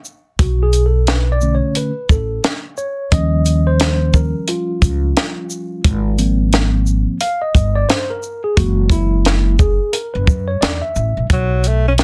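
This dry, dense and heavily limited recording sets its parts close, cut from a longer jazz-hop track with a mellow, cool, swung hip hop mood. A compact cocktail drum kit runs throughout, its dark, smooth, rolled-off sound built from hi-hat, shaker, a high-tuned snare and a punchy kick in a small acoustic room. From 0.4 seconds, a woody, growly pizzicato upright bass with steel strings sits up front. Entering at that same moment, a clean tine electric piano heard through its built-in speakers carries a solo over chords moving from Bm7 through D#7, G#6 and F#7. At 11.3 seconds the piano stops and a breathy alto saxophone enters for the final moments, its jazz phrasing marked by vibrato and scooped notes and a roomy, distant air.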